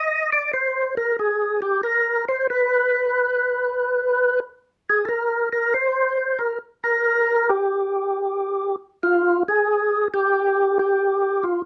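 Jazz with a late-night, bluesy mood and a lilting swing, cut from a longer piece: a lone tonewheel organ plays up front from start to finish, its fat, lightly overdriven tone shaded by second-harmonic percussion, audible key click, chorus vibrato and a slow rotary speaker, heard through close, detailed microphones with light reverb and a trace of lossy compression artefacts.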